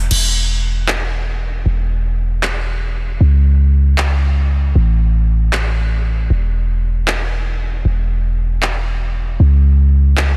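A deep, boomy 808-style bass with a sine core, a noise layer and a fast attack before it decays sits up front through this short, euphoric and bright future bass passage at 155 BPM in a half-time feel, while a lower, overdriven electronic trap kit with crash cymbal and handclaps, re-recorded in a small room, runs alongside it in a dry, dense and heavily limited modern mix.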